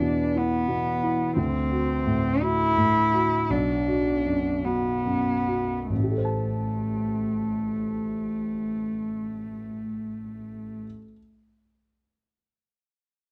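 Neoclassical piano and strings in a lilting 6/8, this brief, reflective fragment feels fragile and unhurried, its rubato phrasing slowing down from 0.4 to 5.9 seconds. A grand piano with a dark, mellow, slightly boxy tone carries the accompaniment across a broad span of its range, sitting up front in the mix. A single muted cello, bowed con sordino with light vibrato, adds a veiled second line in its middle register, also close and present. The harmony drifts from E5 through D7 and Bm before settling on Am7 as a new passage begins at 5.9 seconds, with the whole performance tuned a touch below standard pitch at A4 = 436 Hz. Light reverb gives the intimate pair a gentle sense of space, and the cello falls away at 10.8 seconds, just before the piano's final sound.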